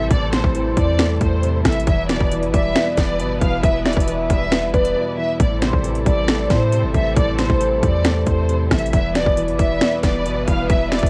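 Worn, warbling cassette-tape sound with little reverb colours this brooding, dark trap excerpt in A minor at 136 BPM in a half-time feel, where an overdriven, up-front drum kit of hard-clipped kick, sharp snare, metallic hats, rim clicks and finger snaps sits over a deep, boomy 808 bass, while an expressive, distant violin section carries the melody above a velvety synth lead with chorus and delay, a boxy, mellow grand piano, lush bowed strings holding sustained chords in the background, and a barely audible downlifter in the first 1.9 seconds, with a brief break at 5.0 seconds.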